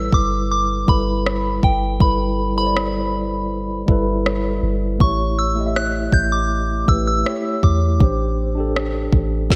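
Contemporary R&B in a romantic, tender mood, this short excerpt moves at an unhurried pace in a straight four-beat feel. A soft, pure FM-style synth bell carries the melody high above the arrangement, its gentle, warbling vintage tone treated with chorus and digital delay until it drops out at 8.3 seconds. Beneath it, a mellow tine electric piano plays the accompaniment through its built-in speakers, clean and close, while a round, sine-like 808-style bass sits deep and dark with a fast attack that decays. The smooth electronic drum kit, the loudest part, enters at 0.1 seconds with a soft kick, a rim click and a woody snare. The harmony moves from G69 to A7 and settles on D7sus4/A, all framed by light reverb, digital ambience and a bright 1980s-style digital production.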